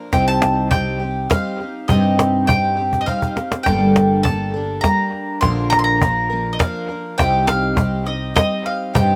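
A dry outdoor recording with little reverb opens on a picked twelve-string acoustic guitar, its shimmering, octave-doubled strings laying down an up-front accompaniment for this intimate, reflective folk fragment cut from a longer piece. A bright bowl-back mandolin joins at 0.1 seconds, its paired strings carrying a solo line high above the guitar, set off by a slapback echo. Underneath, a mellow fretless electric bass adds a dark, round low end, while a snappy cajon with snares, played with soft hands, keeps a gentle pulse and drops in a brief fill around 2.9 seconds. The tune moves in 3/4 at 102 BPM, passing from C minor through G minor add9 and B-flat before returning to C minor at 7.2 seconds.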